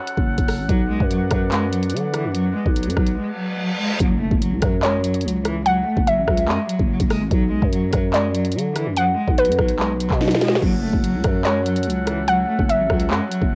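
Drill-style hip hop in F# minor at 145 BPM with a half-time feel, cold and ominous, opening on a brief break before a bowed cello enters at 0.7 seconds with a pure, floating sul tasto line over a growling, buzzy 808-style bass and an electronic drill kit of knocking kick, sharp snare, bright hats, rim clicks, handclaps and crash. A mellow woodwind section holds tight, vibrato-tinged chords at the opening and returns at 10.6 seconds, while a reverse cymbal rising into an impact marks the shift at 4.0 seconds, and shortly after, at 4.8 seconds, a warbling, dusty pluck with chorus and analog delay takes up a second line. The cello, woodwinds, drums and pluck carry a lo-fi cassette tone, set in digital ambience with a home-recorded character, and a short drum fill sits just before the woodwinds return in this cut from a longer piece.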